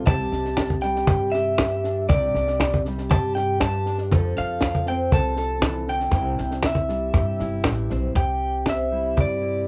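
Fingerpicked steel-string acoustic guitar and dark, thumpy pizzicato upright bass on gut strings open this pastoral, hopeful acoustic folk excerpt in C major at 119 BPM, joined at 0.1 s by a slightly broken-up, lo-fi, up-front electric guitar melody through a small old amp with harmonic tremolo, a dry cocktail drum kit with punchy kick and high-tuned snare, and a woody, soft-handed cajon with faint snares, the harmony shifting to F at 4.1 s and back to C at 6.1 s in a light-reverb home recording on cassette.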